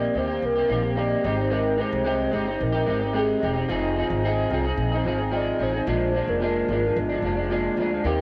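A slightly broken-up electric guitar through a small old amp sits up front in this laid-back, nostalgic indie pop excerpt, its picked, compressed accompaniment colored by analog chorus and a warbly pitch drift as the chords move from Eb6 through Abmaj7, Fm7 and Bb7. Behind it, a mellow, detuned lead carries the melody in the background, treated with tremolo, lush chorus, tape echo and a cassette tape effect, while a woody pizzicato upright bass holds the low end. The whole excerpt sounds like a home cassette recording, with light reverb and a small-room ambience.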